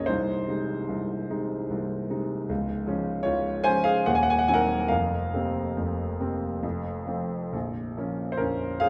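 The grand piano sits up front in a moderate recital hall reverb, its tone warm, smooth and vintage, with a gentle glow of room around each note. This is a romantic classical character piece for solo piano, brooding and bittersweet, in three-four time and played with a free, breathing rubato. The piano carries the whole of this short passage, cut from a longer work and running from the opening to 8.9 seconds, ranging from a deep Bb0 up to Ab5. The harmony moves from Ab/C through Db and a darkened Cdim/Eb, then hangs on Fsus4 before settling onto F at 6.6 seconds and turning to Bbm at 7.5 seconds. The effect is a single, searching phrase that seems to pause mid-thought, full of quiet longing.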